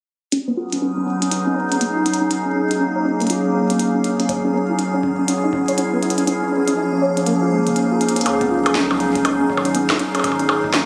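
A swung sixteenth-note groove of clicky, tape-warm hats, tiny snare and percussion blips, all filtered and echoed, opens this wistful, glitchy IDM piece; a deep, overdriven electronic kick enters in the background at 4.3 seconds, drops out at 6.3 seconds, and returns after a drum fill. Up front, an icy, crystalline glass pad holds sustained suspended chords while a soft, round pluck with lush chorus and delay spins dark arpeggios, both under filter sweeps. A round sine sub bass arrives at 8.3 seconds, all set in a lush hall reverb with compression and the ambience of a phone recording in the room.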